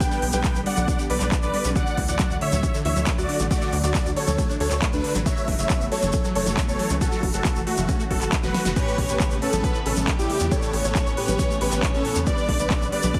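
A huge, detuned supersaw carries the soaring melody of this euphoric uplifting trance excerpt in D major at 137 BPM, pumping against a punchy, up-front electronic kick and a tight sawtooth sequencer bass, while a big-room kit with a huge snare, crisp hats, congas, handclaps and crash adds a drum fill at 8.4 seconds alongside a grainy tube shaker. Underneath, a phased unison pluck spins bright arpeggios, veiled con sordino strings hold sustained chords in the background, and a very quiet, intimate concert grand adds a boxy second line with audible action noise. At 8.8 seconds a smooth symphonic violin section joins with vintage 12-bit sampler grit and delay as the chords move from G through D and F#m7 to Aadd9, all under light reverb and a heavily compressed, radio-style sound.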